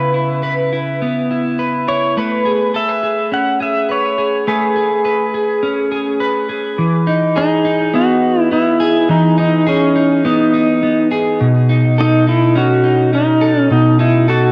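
Floating and ethereal, this dream pop fragment, cut from a longer piece, drifts along at 104 BPM in a straight 4/4, with chords moving from C#m7 and Amaj9 to Emaj7 and B9 after a shift in the passage at 6.8 seconds. Up front, a dark, picked clean electric guitar plays arpeggios coated in lush chorus and analog delay, while a bright, twangy pedal steel guitar sings the melody with fingerpicked slide lines and volume swells, compressed and tinted by cassette tape and its own analog delay. Both parts sit in a moderate spring reverb, and the home cassette recording gives the whole piece an intimate, hazy character.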